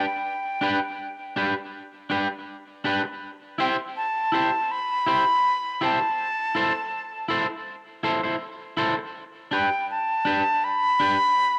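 Soaked in wet spring reverb and a small room's ambience on a home cassette recording, this laid-back reggae fragment at 81 BPM in G major sets a breathy, bright concert flute up front on a tongued, unsteady melody over a twangy, slightly broken-up picked electric guitar, both carrying tape echo, as the chords move from G to C, A minor and back to G.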